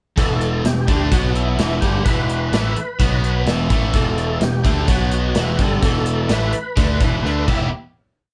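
From 0.2 seconds the whole band kicks in together on a brooding, swaggering classic rock verse at 127 BPM in E minor, rocking between Em and B5. Up front, a raw, double-tracked garage guitar picks a power-chord riff, doubled by a growling, overdriven picked bass playing the same syncopated line, while a gated 80s kit with a punchy kick and bright cymbals drives a big groove and a gritty, percussive tonewheel organ spins motif-based song phrases through chorus vibrato and a fast rotary speaker. Captured as a band playing live in one room with light reverb and a dull top end, the verse closes on a drum fill at 7.2 seconds before a final hit at 7.7 seconds.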